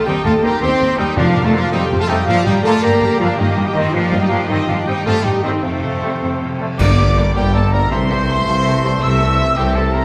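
A wet scoring-stage reverb surrounds this adventurous, determined cut from a heroic film score in a straight 6/8 at 108 BPM, where a lush, distant violin section carries the melody over a second violin section, a very quiet clarinet and a mellow flute. Bright, tight trumpet stabs, sustained chords from the French horns and a clear, vintage trombone section, ringing fingerpicked harp arpeggios and a viola section with expressive portamento sit above a rich foundation of cellos and double basses. Timpani with calf heads mark the music early on, a cymbal swell with dark clash cymbals and concert bass drum arrives at 4.5 s, and at 6.8 s the band hits an accent as the music settles into G dorian and a tuba joins the bass.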